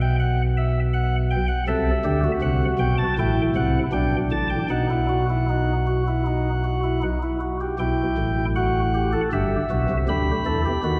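In a straight 4/4 pulse, this short fragment of a serious, driving baroque-style three-part fugue is played solo by a chamber organ on soft flute stops, whose chiff and warm chamber voicing sit up front. The harmony moves through Em/B, C, Am and B before a new section arrives at 7.8 seconds, settling on Em and Em/G. A long, wet church reverb surrounds the organ, heard from further back in the room.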